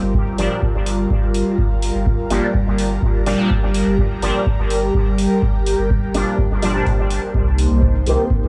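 Nocturnal and deep, this short dub techno excerpt moves in a steady, straight 4/4 pulse, cut from a longer piece. An airy, breathy pad sits up front with sustained chords, its soft detuned tone carrying chorus, phaser and sidechain pumping, while a pure sine sub bass underneath stays clean, smooth and dark, pumping in the same way. A dry, analog electronic kick drum anchors the groove, and faint metallic hi-hats join it at 0.4 seconds, both touched by studio reverb. From that point a juicy, resonant sawtooth polysynth plays stabs with a filter sweep, chorus, phaser, sidechain pumping and dub echo. The harmony rests on Gm7 before shifting to Cm7 at 7.3 seconds, and the whole recording has a gritty hardware character in a small room.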